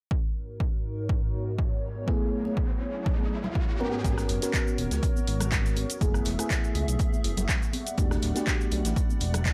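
Moody and deep, this 122 BPM deep house excerpt in G# phrygian opens on a hollow, flute-like pad carrying minor eleventh chords with ensemble chorus, 12-bit sampler grit, sidechain pumping and a filter sweep over an up-front, tape-warm electronic kick, while an electronic riser sounds from 1.5 s, a round, dark FM electric piano adds chorused, phased, delayed stabs, bright congas sit very quietly and distant in a large room, and at 4.0 s a smooth sawtooth synth bass arrives with a punchy analog drum machine of handclaps, hi-hat, rim click and shaker plus a faint, rolled-off soul drum kit with a fat snare.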